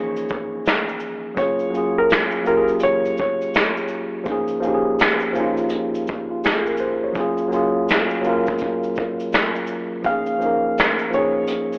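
A soft, felt-muted upright piano carries the melody from the start, its thin felt, audible action noise and tape echo giving it an intimate, mellow voice, while a worn, slightly out-of-tune tine electric piano holds the accompaniment up front and moves between two lush chords. A vintage brush drum kit joins at 0.2 seconds with finger snaps, hi-hat, shaker, a tight kick and a medium-tuned snare, its rolled-off top roughened by 12-bit sampler grit in a small, pumping room. The upright piano drops out at 3.5 seconds and returns at 10.1 seconds, and the whole cut from a longer lo-fi hip hop piece sits in a spring-reverb haze with a telephone-like sound that feels nostalgic and cosy over a lazy, swung groove.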